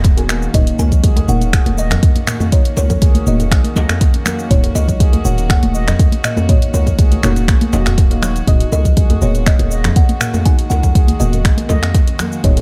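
A deep, up-front electronic kick drives this driving, spiritual afro house excerpt at 121 BPM in Eb minor, with a boomy, sine-based 808-style bass beneath it that pumps against the sidechain. Around them sit an afro-pop kit of finger snaps, dark hi-hats, shaker and toms, a tight, cracking djembe and bright, close congas played with soft hands, the percussion tucked into the background. A ringing, meditative handpan plays arpeggios with tape echo, while a woody, hollow kalimba carries a short, plucked melody high above, its tone kept dark and smooth. A detuned, sub-octave chord stab colored by chorus and phaser sits low in the mix, and a distant, floating chamber string section holds soft bowed chords. The harmony moves from B6/D# to Ebm7 at 0.5 seconds and returns to B6/D# at 8.5 seconds, all wrapped in a dark studio reverb.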